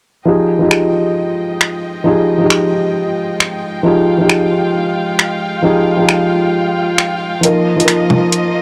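Future garage with a nocturnal, ghostly mood and a swung 4/4 feel, this short excerpt from a longer piece rests on an up-front felt-muted upright piano, soft and intimate with audible action noise, passed through a low-pass filter with tape echo and a filter sweep across its whole length. Beneath it, a dark chamber string section holds smooth bowed chords with vibrato and fades in from 0.3 seconds, moving from Fm9 to Ebsus2/F. A layered deep house kit of bongos, finger snaps and metallic hi-hats enters at 0.7 seconds, overdriven and forward, all set in light small-room reverb within a dry, gritty hardware sound.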